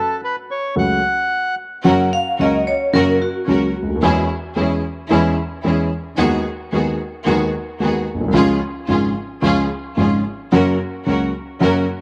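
A reedy, vintage-toned bandoneon opens this passionate, melancholic tango fragment, stating a brief melody up front before a dark, mellow baby grand piano soon joins underneath. The tempo sits at 111 BPM in 4/4, but the feel is rubato, and the harmony moves from F# minor to F# major as a new section begins at 1.9 s. At that point a bright, metallic vibraphone struck with hard mallets adds a ringing second line with fast motor vibrato, while a clear, focused studio string section plays bowed stabs treated with analog delay. The vibraphone drops out at 4.3 s, leaving the worn, intimate piano, with its audible action noise and short sustain, to carry the accompaniment alongside the strings through a progression that returns to F# major. A moderate spring reverb surrounds the whole mix.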